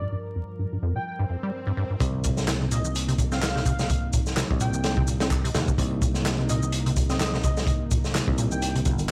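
The crunchy breakbeat drum kit stands out most, hitting at 2.0 seconds with a tight kick, a medium-tuned snare and hi-hat, saturated and gritty with a rolled-off top and sitting up front in a studio room. This raw, energetic breakbeat excerpt, cut from a longer piece in 4/4 with a swung sixteenth feel, opens on a Gm7 chord as a rubbery, resonant acid bass riff with a square-wave filter pluck plays beneath a lush, thick sawtooth pad, detuned and chorused in the background with vintage 12-bit sampler grit and sidechain pumping. Above them an airy, dreamy lead carries the melody, a soft detuned sine with a noise layer, vibrato and chorus, heard through a small speaker sound with tape echo. An electronic swell enters at 1.2 seconds and leads into the drop, where the harmony moves to Cm7 and a bright, growly picked electric bass joins along with overdriven, layered electronic shaker and handclaps under a low-pass filter. 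Vinyl crackle runs through it all, lending a dusty texture.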